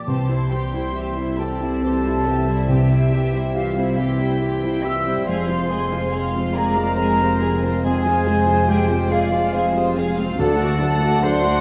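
Tender and uplifting, this cinematic fragment, cut from a longer piece, drifts at a rubato 47 BPM in 6/8, with a floating, softly bowed symphonic violin section carrying the melody over chords moving from C to Fm at 5.3 seconds and D at 10.4 seconds. A distant, airy flute section, a solo clarinet with a smooth top and a dark, woody studio violin section weave second lines, while a felt-muted upright piano and lush viola section fill the accompaniment, a background French horn section sustains chords, a very quiet concert harp rings out fingerpicked arpeggios, and rich double basses with cellos hold the bass. The sound sits in a wet scoring-stage reverb with a bed of vinyl crackle.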